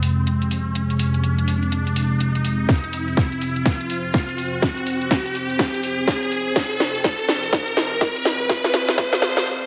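A swung 16th-note groove at 124 BPM in 4/4 drives this gritty, swaggering bass house build-up in F minor, cut from a longer piece and resting on a single Fm chord. A garage drum kit with a cracking snare and bright hi-hats sits up front from the start. A tight, layered electronic kick joins at 2.7 s, where a drum fill begins. Alongside them, a sweeping, resonant sawtooth pad sits up front, holding sustained chords with a slow attack, its detuned, warbling, vintage tone thickened by lush chorus and pumped by sidechain. An electronic riser climbs alongside the build while a filter sweep runs throughout, and the build drops into a break at 9.5 s, all set in a moderate plate reverb with digital ambience.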